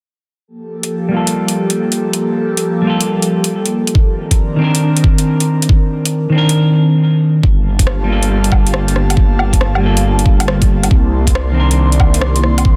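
An airy, breathy pad with chorus, phaser and sidechain pumping opens this melancholic, rainy future garage excerpt at 138 BPM in G minor over Gm9 and Cm9 chords, soon joined by a swung garage kit of overdriven metallic hats, rim click and woodblock and a clean, up-front semi-hollow electric guitar through a low-pass filter and dub echo, then an overdriven knocking electronic kick from 4.0 s and a menacing detuned saw bass with a filter swell from 7.4 s, all in a lush hall reverb under a dense, heavily limited modern master.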